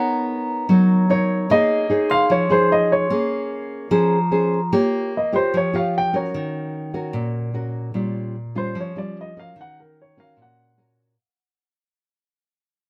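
Melancholic and smooth, this bossa nova moves in a straight four-beat feel and is cut from a longer piece. A grand piano carries the melody up front with a warm tone. A thumb-plucked nylon-string guitar with fresh strings supplies classical, acoustic accompaniment, also close in the mix. For the opening 4.7 seconds, a vibraphone struck with medium hard mallets adds bright, metallic, ringing notes with a slow motor vibrato and an airy shimmer. From 4.7 seconds, the piano takes a solo over the guitar while the recording fades out, as the harmony moves between Bbm6 and Ebm7. The sound is dry and intimate, with close, detailed microphones.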